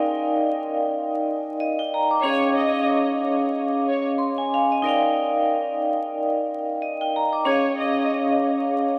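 A brilliant, metallic vibraphone struck with hard mallets opens this short hip hop excerpt, ringing up front with a slow motor vibrato and a worn cassette-tape colour over Ebmaj7 and Dbadd9 chords. The groove sits at 92 BPM in 4/4 with a gentle swing on the sixteenths, giving the nostalgic, soulful mood an easy, laid-back sway. At 2.2 seconds a distant, lush violin section enters with the melody, bowed with expressive vibrato in a narrow upper register and trailed by tape echo. The strings drop out at 8.3 seconds, leaving the vibraphone to carry the final moment alone. A huge ambient reverb soaks the whole mix in a dreamy haze, while vinyl crackle adds a dusty, vintage texture.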